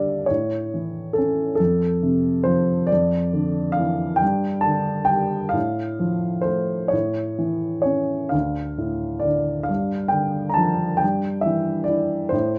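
Reflective and melancholic, this short classical fragment, cut from a longer piece, features a solo upright piano playing lyrically in 6/8 with a free, rubato feel. The instrument sounds dark, woody and intimate, sitting up front with the clatter of its action audible beneath the notes. A light reverb surrounds it as the harmony drifts through chords such as F, Dm and a closing Em7/G.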